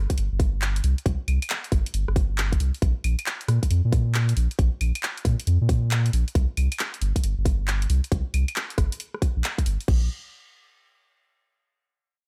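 Late-night and soulful, this short excerpt of UK garage rides a two-step groove at 136 BPM in 4/4, with a 65% swing on the sixteenths. A soft dub sub bass sits up front from the very start, deep and round with a triangle-and-square-wave character, fast attack and sustained notes ranging from G1 to Bb2, coloured by tube saturation. An electronic kick drum, tight and layered, punches through alongside it in a small room reverb. A garage drum kit of claves, crash cymbal, handclaps, hi-hat and rim click sits further back in the mix, sharing that same small room and a produced, electronic sheen. The whole passage plays as a drop until 9.9 seconds, when a brief new section begins and the parts fall away by about 10.1 seconds, leaving a digital ambience.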